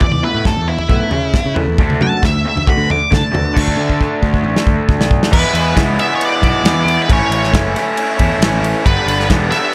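Cathartic and restless, this quiet-loud alternative rock excerpt at 136 BPM in 4/4 opens with a dark, distorted octave-fuzz lead guitar solo up front, over lo-fi, slightly broken-up arpeggios from an electric guitar through a small old amp with phaser and tape echo that stop at 3.6 seconds, while a bright, double-tracked raw garage guitar riff, a round, overdriven fuzz picked bass and a loose indie drum kit with a tight kick and medium-tuned snare in a small room push through a drum fill from 3.6 to 5.3 seconds and chords running from Esus4 to G in a dry, close mix.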